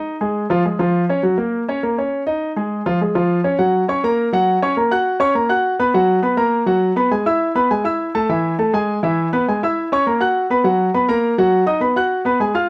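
Sophisticated and sunny, this brisk jazz excerpt at 204 BPM in F# major features a solo concert grand piano, its sound natural and up front with deep bass, ranging from E3 to F#6. Cut from a longer piece, the 12.7-second passage moves from an opening section into a second one at 3.6 seconds, where the harmony drifts through E, A5 and C#m, passes through Bmaj7 and closes on B5. Close, detailed microphones and light reverb keep the playing intimate and clear.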